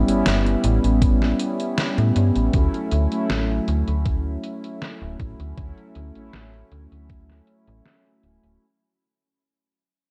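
A nostalgic, dreamy vaporwave excerpt at 79 BPM in a straight 4/4, with a detuned 8-bit digital drum machine ticking out low-passed hi-hats and a medium-tuned snare from 0.1 s, coated in 12-bit sampler grit, studio reverb and gated reverb. A thumpy, tape-softened electronic kick joins at 1.0 s and drops out at 7.3 s, sharing that same gritty sampler character. Underneath, a slap-like FM bass sits up front with a snappy, metallic attack that then decays, moving between D1 and A2. Mellow synth brass carries the harmony in a round, dark sawtooth tone with a filter sweep, sustained chords, subtle chorus and tape echo, shifting from A9 to Dmaj9 at 2.5 s in D major. A digital ambience surrounds the parts, and the whole fragment sits within a fade-out.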